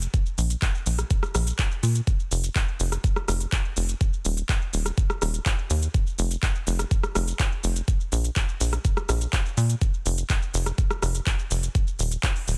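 Progressive house at 124 BPM in a straight 4/4, this excerpt from a longer piece feels emotional and expansive. A tight, driving sequencer bass carries the low end from Eb1 to Bb2, its sawtooth and square-wave tone shaped by a filter pluck and a moving notch, with a fast attack that decays into a mellow body and pumps against the sidechain. An up-front electronic kick with a knocking, tape-kissed punch enters at 0.1 seconds and holds the pulse until 12.3 seconds, set in studio reverb. Around it, a layered pop drum kit of handclaps, crisp hi-hats, rim clicks and shaker sits forward in the mix, its hats, percussion and cymbals pumping with the sidechain. The overall sound is close and dry, keeping the groove punchy and present.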